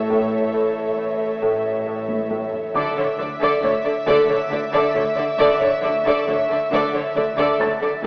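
Mysterious and eerie, this slow 68 BPM cinematic suspense cue in 3/4 moves from A to Dsus2 as an intimate chamber violin section sings a light-vibrato sul tasto melody over a floating symphonic violin second line, dark woody violas, a ringing fingerpicked harp riff, distant cello and double bass sections and background taiko struck with heavy sticks that play a fill at 2.1 seconds, before a mellow felt-muted upright piano with audible action noise and a high background violin texture join at 2.8 seconds, all bathed in a wet scoring-stage reverb and an AM-radio coloring.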